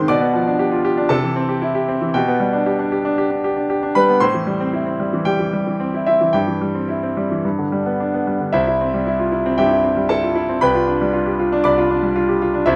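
A bright concert grand piano, up front with deep bass and short sustain, carries this heroic, brilliant classical virtuoso study alone in free rubato, moving from a G7/B opening through Am7 and C/G before a new passage at 8.5 s settles between C and G7/C, all in a polished studio setting with moderate reverb on a brief cut from a longer piece.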